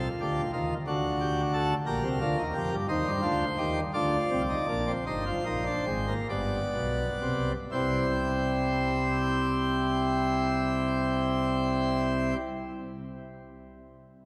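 A cathedral's deep, wet reverb, nearly five seconds long, surrounds this short cut from a longer classical piece: a baroque-style three-part fugue for solo pipe organ. The organ sits up front on a full plenum, its mixtures giving a brilliant, baroque-voiced sound with a clear chiff at the start of each note, spanning G1 to D5. In 6/8 with a straight feel, the dotted-quarter pulse moves between 39 and 60 BPM, and the music slows between 1.9 and 7.7 seconds. The harmony passes through D, G minor over B-flat, C minor and B-flat with an added ninth before settling on G and then C as a new section begins at 7.7 seconds. The organ stops at 12.4 seconds, leaving the hall's reverberation to carry the serious, driving mood to the close.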